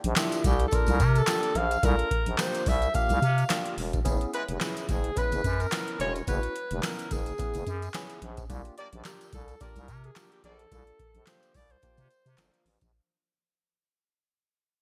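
Over a lightly swung sixteenth-note groove, this danceable, late-night early-eighties boogie funk excerpt fades out as a booming analog drum machine with deep kick, crisp gated snare, handclaps and metallic hi-hat sits up front beside a thick, growling FM bass, while a breathy alto saxophone with light vibrato and digital delay carries the melody over a barky, lightly overdriven tine electric piano with phaser, a jingly tambourine sits in the background, a mellow horn section in octave doubling plays a second line from 4.3 to 10.6 seconds, and a lush hall reverb and bright digital production frame the C9sus4 and Gb9sus4 chords.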